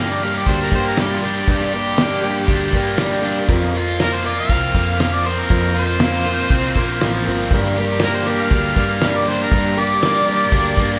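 Wistful and dusty, this short folk rock and heartland rock passage moves at 119 BPM in a straight 4/4 and sits in G minor, shifting from Gm to Fsus4 at 3.5 seconds and back to Gm at 7.5 seconds. A clear, up-front harmonica carries the melody throughout as a solo, its pop-style phrasing marked by light vibrato, scooped notes and a smooth top. Beneath it, a picked plugged-in twelve-string acoustic guitar adds shimmering, octave-doubled accompaniment with a woody, old-strings character, while a cranked stack guitar plays an overdriven, double-tracked riff close to the front. A round, foam-muted electric bass and a damped 70s drum kit with a fat snare, tight kick and rolled-off top hold down the low end, and a very quiet tonewheel organ sustains piping chords through a slow rotary speaker with key click. A faint, jingly tambourine joins at 8.0 seconds, and the whole band sounds like it is playing live together in a large studio with moderate reverb.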